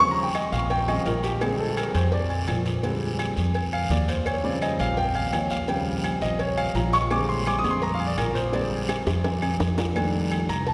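A straight 4/4 pulse at 169 BPM drives this lively, sophisticated Afro-Cuban jazz fragment in Bb mixolydian. A smooth, vintage grand piano solos up front over Eb13, Bb13 and F13 harmony, while a thumpy pizzicato upright bass with steel strings anchors the low end. Close percussion surrounds them: dry, ringing metal-shell timbales and agogo bells, tight high-tuned cowbell and bongos played dry with soft hands, a raspy, dry guiro and very quiet, woody claves, with a drum fill at 8.9 seconds, all set in a long, wet cathedral reverb.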